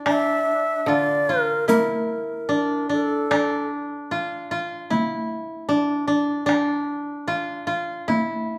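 In a moderate recital hall reverb, this short, austere and meditative fragment of Japanese traditional chamber music unfolds freely in rubato. A breathy, bright shakuhachi of end-blown bamboo carries the melody up front from 0.1 to 3.7 seconds with a straight, tongued tone. Meanwhile, a woody, fingerpicked koto plays a second line throughout, a mellow second koto adds low accompaniment between 0.9 and 3.3 seconds, and a taiko ensemble struck with hard sticks sounds compressed and saturated beneath them.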